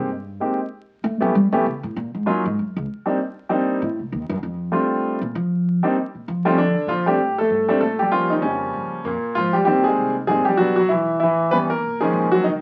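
The sound is that of a very old 78 rpm record, with vinyl crackle over a muffled top end and a moderate studio reverb around the players. This sophisticated jazz piano trio excerpt moves at a brisk 194 BPM in 4/4 with a swung eighth-note feel. The upright bass carries the low end with pizzicato gut strings, giving a woody, thumpy, dark tone, and it takes a solo through the first 6.9 seconds. A clear concert grand piano sits up front with the melody, its natural sound marked by deep bass and long sustain. The harmony moves through rich extended chords such as Abmaj7, Db69, Cm9 and Eb9, arriving on Bmaj9#11 around 11.8 seconds for a warm end to the excerpt.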